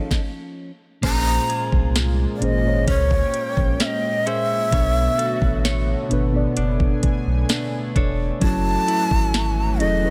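A breathy, bright shakuhachi carries the melody over muted, felt-like synth keys with chorus, a shimmering, sidechain-pumped pulse-width pad and clean, direct-recorded electric guitar arpeggios from the start of this late-night, moody contemporary R&B excerpt, with an up-front electronic kit of knocking kick, sharp snare and metallic hats arriving at 0.1 seconds and a deep, full sub bass with octave joining at 1.0 seconds as the chords move from F7alt through Bbm9, Bm9 and Gbm9, all set in a digital ambience.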